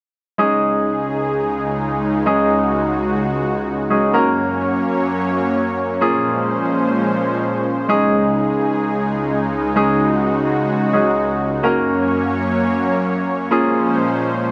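A pop excerpt in free time, carefree and euphoric, built from a bright concert grand piano and a supersaw pad that both sound from 0.4 seconds to 14.5 seconds. The piano plays accompaniment in its middle register, its brilliant, polished tone sitting up front with deep bass weight and short sustain. Alongside it, and also up front, the lush supersaw pad holds sustained chords across a broad span, its detuned sawtooth unison voices carrying an airy noise layer and a slow attack. The harmony cycles twice through a suspended tonic, a major chord and a minor seventh, giving the passage an open, carefree lift. A moderate plate reverb with a 2.5-second tail lends the whole a spacious, glossy sheen, and the fragment is cut from a longer piece.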